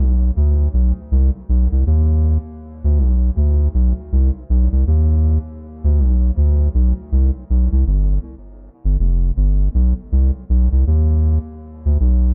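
Deep, round and up front under a light reverb, a soft dub sub bass plays alone through this meditative, laid-back reggae fragment cut from a longer piece, its fast-attack, sustained tone blending triangle and square waves in a swung sixteenth-note feel from 0.0 to 12.3 seconds.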